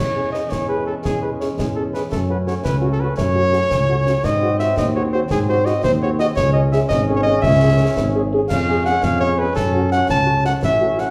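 Stern and martial, this military-style march for wind band moves in 6/8 at 113 BPM, counted in dotted quarters with a straight feel, in C# minor and tuned to A4 = 436 Hz. A dark cornet carries the melody, played close-miked and up front in classical style with light vibrato, while a tuba sits just as near and forward on the bass line. A bright trombone section holds sustained chords with its own light vibrato, and a mellow, vintage-sounding French horn section adds soft-attack accompaniment from the background starting at 0.2 seconds. Concert snare drum, concert bass drum and clash cymbals enter at 0.3 seconds with an acoustic, small-room character. The harmony moves from C#m/E through F#m and G#7 back to C#m, then on to C#7/E# and F#m. A wet, large studio reverb places the band further back in the room, and the passage is cut from a longer piece.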